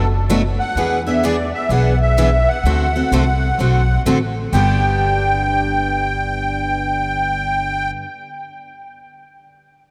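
A swinging 4/4 pulse at 127 BPM drives this lively, short excerpt of acoustic jazz manouche in G major, with a thumpy, woody pizzicato upright bass up front beneath two picked steel-string acoustic guitars: a bright, full-bodied jumbo with audible finger squeak and a boxy parlour guitar tucked in the background. Over them a reedy, shimmering musette accordion carries the melody up front, its dark, smooth tone trailed by analog delay. The chords move from Bm7 through E7 and D7 before settling on G at 4.5 s, all bathed in a huge, dreamy ambient reverb.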